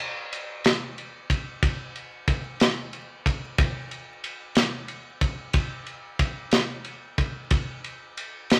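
Romantic and tender, this short pop clip sways in 6/8 at a slow 61 BPM, counted in dotted quarters, with a straight feel. A modern acoustic drum kit plays throughout the 8.6 seconds, its punchy kick, medium-tuned snare and ride cymbal sitting up front with an airy, polished small-room character. A moderate studio reverb and a layer of vinyl crackle surround the short passage.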